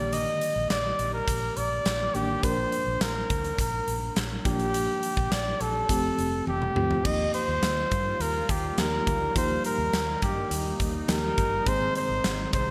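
A warm flugelhorn carries the melody up front in this glossy, romantic piece of 1980s-style pop, its smooth top and light vibrato trailed by a digital delay. At 104 BPM in a straight 4/4, it rides over a mellow FM electric piano whose soft, round tone warbles through chorus and tremolo, while a vintage muted fingered bass keeps a dark, foam-muted, rounded low end. A huge arena drum kit sits up front with a punchy kick, medium-tuned snare, bright cymbals and toms, all drenched in gated reverb, and a drum fill from 6.5 to 7.0 seconds leads into the second section. At 7.0 seconds a sweeping, detuned sawtooth pad slides in behind the band with a slow attack and filter swell, adding sustained, evolving chords as the harmony moves from Ebadd9 to Ab. A wet plate reverb and bright digital production give this excerpt, cut from a longer piece, its polished studio sheen.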